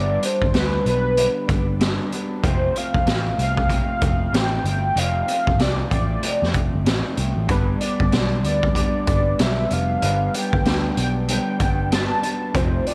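Indie bedroom pop with a nostalgic, laid-back feel, this excerpt moves at 95 BPM in 4/4 with a 16th-note swing, sitting in G mixolydian as the harmony shifts from G to F and back to G at 7.5 seconds. A velvety, detuned sawtooth synth lead with analog chorus carries the melody over a slightly broken-up electric guitar through a small old amp, treated with subtle chorus and vibrato, while a dark, round, foam-muted picked bass and a gritty, up-front garage drum kit with a boomy kick and rolled-off top hold down the groove. At 7.5 seconds a bright, barky tine electric piano slips in very quietly, and the whole mix sits in light reverb with a small room ambience.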